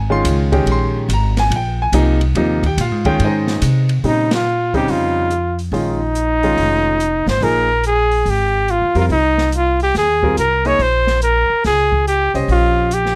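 A swung 4/4 at 142 BPM drives this spiritual, hypnotic modal jazz passage in Bb dorian, cut from a longer piece, with clear concert grand piano comping over Bbm11, Ab and Bbmadd9 alongside woody pizzicato upright bass and a softer, small-room drum kit of dark cymbals and punchy kick. The trumpet enters at 4.1 seconds as the up-front solo voice, warm with light vibrato, just before a band accent at 4.3 seconds. Close, detailed microphones and little reverb keep the sound dry and intimate.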